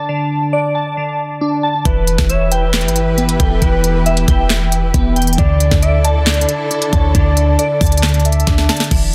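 Trap-styled hip hop with a melancholic yet hard-hitting mood, moving in a half-time feel. Glassy digital keys open alone with arpeggios, sitting up front with chorus, delay and a low-pass filter sweep on their quick-decaying sine tone, over a D5 chord before the harmony shifts to Em and then Dsus2. At 1.9 s the rest of the arrangement arrives together: a deep, boomy 808-style bass with a clean, dark sine character, an overdriven electronic trap kit with a knocking kick, sharp snare, crisp hats, handclaps and crash, and a lush bowed string ensemble holding expressive sustained chords with vibrato. Above them a smooth, gliding portamento lead carries a second line in a sine voice treated with chorus, delay and vibrato, while the drums close with a fill at 8.5 s. The sound is dry, with the drums and keys pushed to the front in a dense, heavily limited modern master, and the passage is cut from a longer piece.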